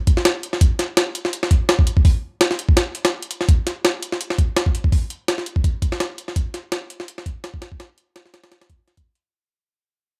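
Dark and atmospheric, this short excerpt of drum and bass runs at 167 BPM in 4/4, with a light swing on the sixteenths. The only part is a jungle sampler-style drum kit of kick, snare and hi-hat, entering at 0.1 seconds and playing through to 9.2 seconds. Its sound is compressed, pitched up and gritty, pairing a thumpy kick with a high-tuned snare and a tape-warm sheen. The kit sits up front in a small room ambience, with little reverb around it. The piece opens on a drop, and a fade-out begins at 3.5 seconds and carries on to the end of this cut from a longer track.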